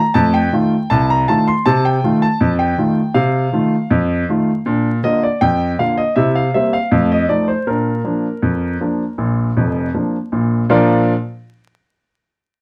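A dark, warm production with vinyl crackle and a moderate small-room reverb frames this short ragtime excerpt, cut from a longer piece. A clear grand piano plays solo and up front in Bb major at 80 BPM in a straight 2/4, spanning F1 to C6 with a cheerful, jaunty feel. The harmony moves from F7 to Bb at 4.7 seconds, through C7 and F7, and back to Bb; a new section begins at 10.7 seconds, and the piano stops shortly after, at 11.1 seconds.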